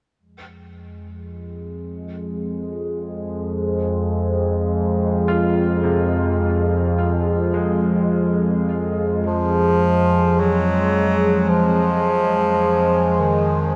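A close-miked bass clarinet, clear and classical in style, carries an up-front solo melody from 9.3 seconds over an ominous, vast ambient piece in free time, cut from a longer work and centred on F minor. Beneath it, an evolving analog drone of sawtooth and pulse waves with slow attack, long release, chorus and phaser sustains from one second in, while a bright, intimate baby grand piano with audible action noise, long sustain and delay plays arpeggios from 5.3 seconds and fades out. A huge, wet reverb and worn cassette tape with warbly pitch drift give the whole recording its aged, cavernous sound.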